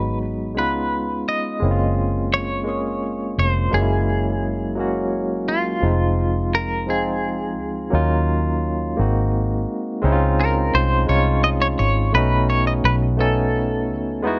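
A semi-hollow electric guitar carries the melody in this slow six-eight R&B excerpt, its clean, picked, compressed hollow-body tone shaded by tremolo and sitting up front. Underneath, a barky tine electric piano plays the accompaniment in a bright voice through a combo amp, pulsing with fast tremolo. A vintage fingered electric bass anchors the low end with a foam-muted, round, punchy sound, dark and amped. At 57 BPM in Db major, the harmony drifts through lush ninth and seventh chords before a new section opens at 10.0 seconds on Dbmaj7, and the guitar drops out at 13.9 seconds while piano and bass carry on to 14.4 seconds. The dry, dark production keeps the mood intimate and warm.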